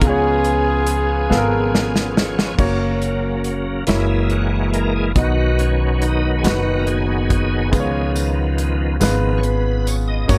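A small room ambience and an echo-heavy mix frame this reverent, hopeful slow gospel piece, cut from a longer performance and moving at 47 BPM in a straight 6/8. A warm horn section carries the melody with light vibrato and a jazz-style ensemble phrasing through analog delay, but it is heard only from 0.0 to 1.7 seconds. Underneath, a clear concert grand piano with deep bass supplies accompaniment, while an upright bass, woody, growly and thumpy, sits up front with the acoustic drum kit, whose medium-tuned snare, tight kick, hi-hat and crash give a natural country feel. A bright, shouting tonewheel organ holds sustained chords through chorus vibrato and a slow rotary speaker, takes a fill alongside the drums, then steps forward with a solo from 2.6 seconds over chords moving from F# to F#7 and B. A jingly tambourine joins in the background at 7.7 seconds as the harmony returns to C#7.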